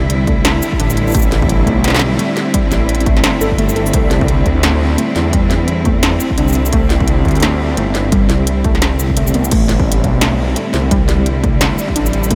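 A half-time drum and bass groove at 172 BPM swings its sixteenths, driven by a heavy electronic kick and an industrial kit of clanging snare, crisp hats, shaker and crash, while a rumbling, detuned saw bass sits beneath a clear, bowed cello section holding sustained Cadd9 chords that pump against the sidechain. From 0.3 seconds a lo-fi, warbling pluck spins arpeggios in the background, roughened by 12-bit sampler grit, chorus and diffuse delay. The whole cut, taken from a longer piece, feels heavy and cinematic, drifting in a dreamy mix soaked in huge ambient reverb.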